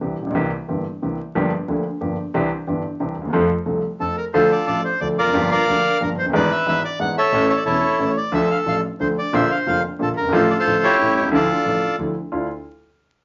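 Tango in a sultry, tense, rubato triple metre, cut from a longer piece: a polished, present grand piano carries the harmony up front over a clear, bowed double bass with vibrato in the background, and a reedy bandoneon enters at 4.0 s to take the melody up front as the music turns to a minor key, all wrapped in a wet studio reverb and a vinyl crackle with a dulled top end.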